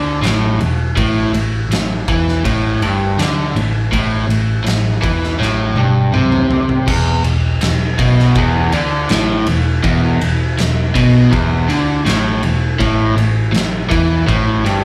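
A straight 4/4 groove at 81 BPM drives this gritty, smoky excerpt of blues rock with a southern rock edge, cut from a longer piece in E minor. An overdriven, double-tracked electric guitar carries the riff in its low register, up front and compressed, with a slapback echo trailing its picked notes as the harmony moves between E5 and A5 power chords. Underneath, a vintage muted picked electric bass sits dark and round, its foam-muted tone amped from the first second. The oversized low-tuned drum kit enters at 0.2 seconds, with a boomy kick, fat snare, toms and dark crash and ride cymbals, its pumping, saturated room sound pushed close to the listener. A drum fill from 5.4 to 6.9 seconds leads into a repeat of the same section, and the whole band is heard as a live gig through the venue's PA, framed by a small club reverb.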